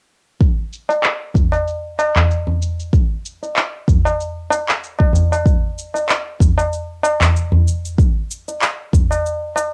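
Meditative and warm, this organic downtempo groove in 4/4 carries a gentle swing on the sixteenths, and it is cut from a longer piece. A deep electronic kick drum sits up front from 0.4 seconds, given small room ambience and a cassette tape character. Electronic shaker and handclaps enter alongside it, with their percussion and snare softened by a low-pass filter and the same small room and tape treatment. At 0.9 seconds a high-tuned acoustic tabla joins, its short-ringing strokes compressed and saturated and placed close to the listener. Light reverb and the hazy feel of a home cassette recording tie the kit together, and the tabla and the shaker and handclaps carry on to 9.7 seconds.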